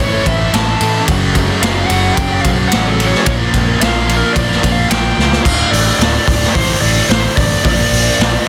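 Brooding and cathartic, this short cut from a longer quiet-loud alternative rock piece moves at a steady, straight 4/4. A biting, overdriven lead guitar carries the melody and takes a solo over the first 5.5 seconds, while a distorted rhythm guitar and a compressed fuzz guitar grind out riffs in the background. Beneath them, a picked electric bass sounds growly and punchy, and a very quiet, twangy twelve-string electric guitar adds clean arpeggios until 5.4 seconds, when it drops out along with the fuzz guitar. The raw garage drum kit sits up front with a boomy kick, a medium-tuned snare, hi-hat, ride and crash, its tone saturated and gritty with a rolled-off top. A drum fill at 5.2 seconds leads into the second section, which opens on a D5 power chord, all set in a small room and pressed into a dense, heavily limited modern master.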